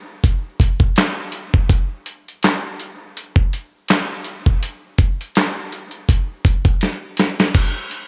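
A dusty soul sampler-style drum kit carries this short R&B passage on its own, entering at 0.2 seconds with a gritty, overdriven, compressed sound placed up front. Its thumpy kick and medium-tuned snare sit alongside hi-hat, handclaps and a crash cymbal, all with the character of samples re-recorded in a small room. The groove moves in 4/4 with a swung sixteenth-note feel, giving the soulful, introspective mood an unhurried lean. A drum fill arrives at 6.8 seconds and runs into the close of the section. Light reverb and a bright 1980s-style digital production frame the kit, and the clip is cut from a longer piece.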